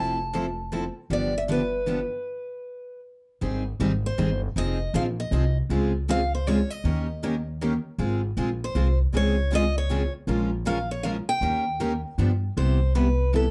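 Playful and charming, this excerpt of jazz manouche string swing moves at 157 BPM in a swung 3/4. A bright, boxy parlour steel-string guitar carries the melody up front over a full-bodied jumbo guitar's picked chords, with a second rhythm guitar sitting in the background and a woody, thumpy gut-string upright bass played pizzicato, all in light reverb with a dark production. The band breaks for a brief stop at 2.3 seconds before settling into Ab major at 3.4 seconds.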